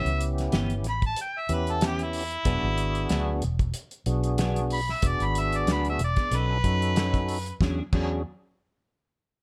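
A straight-eighth soul blues groove at 93 BPM in E mixolydian, lightly swung on the sixteenths, rides on a cloth-damped, thuddy drum kit with a fat snare, tight kick and dark cymbals, alongside a round, foam-muted fingered bass, both sitting up front. Over this gritty, swaggering bed, a mellow, overdriven harmonica plays a jazz-style solo with light vibrato until 7.6 seconds, while a lightly overdriven tonewheel organ with slow rotary speaker, chorus vibrato and key click carries the accompaniment and a clean, picked electric guitar with analog chorus adds stabs. Light reverb surrounds this short cut from a longer piece, which moves through A9, E9 and B9 before landing on E13.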